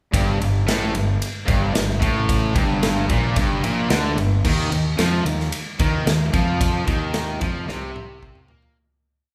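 A full band crashes in together at 0.1 seconds with an aggressive, driving hard rock riff in G minor at 111 BPM in a straight 4/4, with a big acoustic rock drum kit sitting up front with a punchy kick, a medium-tuned snare, toms, and bright crash and ride cymbals. Three picked electric guitars each play a single-note riff: a tight, double-tracked distorted guitar, a crunchy overdriven guitar set in the background, and a dark, sludgy overdriven guitar mixed very quietly beneath them. A growly fuzz-toned fingered bass, direct and amped with overdrive, doubles the guitar riff in driving eighth notes. The harmony moves from G minor to an Eb power chord at 4.4 seconds, and the band plays together in one large studio room whose moderate reverb gives the sound a live, roomy weight. A fade-out begins at 6.6 seconds, and the drums close the short piece with a fill from 7.7 seconds.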